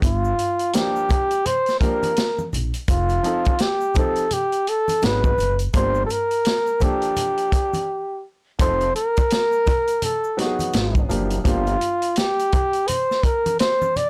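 Mellow and nocturnal, this jazz-hop excerpt at 84 BPM in G minor swings gently over Gm7, F7 and Abm7, as a breathy, vibrato-laden flugelhorn with scooped notes carries the melody up front, backed by a woody upright piano with short sustain, a growly pizzicato upright bass with tube saturation, a punchy vintage drum kit with a rolled-off top, and soft-handed shaker and congas, with a break from 7.9 to 8.6 seconds, piano and bass dropping out at 11.7 seconds, and the whole recording blown-out and overdriven in light reverb.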